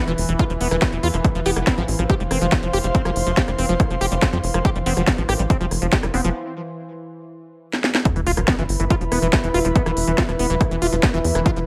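A punchy, up-front kick and a dark, tight sequencer bass drive this intense, hypnotic psychedelic trance excerpt, where a squelchy liquid acid bass riff with chorus and delay pumps against a cracking snare, smooth hats and rim clicks, an airy breathy pad floats overhead while a very quiet evolving wavetable pad sustains chords beneath, a juicy resonant blip pluck flickers in the background, and after a break and drum fill a faint sub drop marks the drop at 8.1 seconds, all in light reverb.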